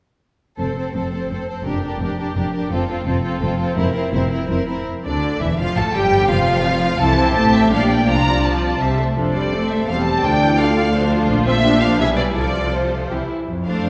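A quick, spirited classical-period movement for string orchestra in F major, moving at 168 BPM in 3/4 with a lively yet rubato feel, heard as a short cut from a longer piece. A lush, up-front violin section carries the melody with focused vibrato, a warm second violin section plays an even inner line, and smooth violas supply the accompaniment. Bowed cellos sit in the background while a distant double bass section anchors the low end, all from 0.6 s to 13.9 s, bathed in the wet bloom of a concert hall reverb as the harmony turns through Dm and a striking E7#9/B before settling on C.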